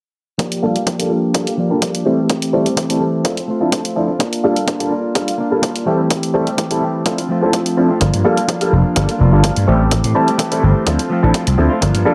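A twelve-string electric guitar riff opens this sensual, groovy filtered disco house excerpt, with electronic kick and hi-hat landing alongside it in a lightly swung 4/4. The guitar sounds clean, picked and compressed, sitting up front with a low-pass filter and sidechain pumping, while a filter sweep runs through the whole passage. A bright, brilliant grand piano joins at 0.6 seconds as accompaniment, shimmering through a phaser and also pumping against the kick. The drums carry an analog, tape-warm character, the punchy kick high-passed and the hats pumping, both re-recorded in a large room. At 8.0 seconds a vintage slap bass enters, growly and amped with tube saturation, pushing forward as the loudest part. The chords cycle through Gm7, Am7 and Dm7 under light reverb and digital ambience.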